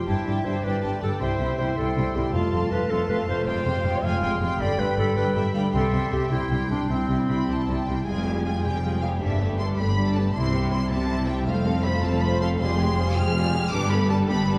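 A lush orchestral cue in 6/8 opens with violins, violas, a clarinet and a concert harp, and the mood is soaring and heroic. A symphonic violin section carries the melody high above with a smooth, even vibrato, while a second violin section adds a rich, distant line beneath it. Up front, a clear, softly attacked solo clarinet in classical style sings its own second line until about 7.9 seconds. Violas fill the middle with expressive portamento, the harp ripples mellow, ringing arpeggios at a very low level, and from 0.1 seconds cellos in the background and a soft-edged double bass section anchor the bass. The harmony turns through Gadd9, C, F and a darker Fmadd9, and the phrase repeats from 8.1 seconds. A scoring-stage reverb with a two-second tail places the ensemble further back in the room, and the passage is cut from a longer piece.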